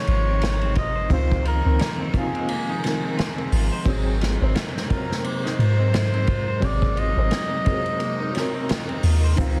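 A cup-muted trumpet, veiled and distant with 12-bit sampler grit and tape echo, carries a brooding melody over a felt-muted upright piano whose soft, intimate accompaniment shimmers with tremolo and audible action noise, while a lush bowed string section sits in the background. This dark trip hop excerpt moves at 87 BPM with a swung feel, shifting from Dbmaj9 to Ab7 at 3.9 seconds. Underneath, a round, deep 808-style bass and a roomy acoustic kit played with bundle sticks and a punchy, softly clipped kick sit up front, joined by a clean semi-hollow guitar picking arpeggios through digital delay, a faint flickering granular texture, and a brief egg shaker at 9.4 seconds, all in a dense master dusted with vinyl crackle.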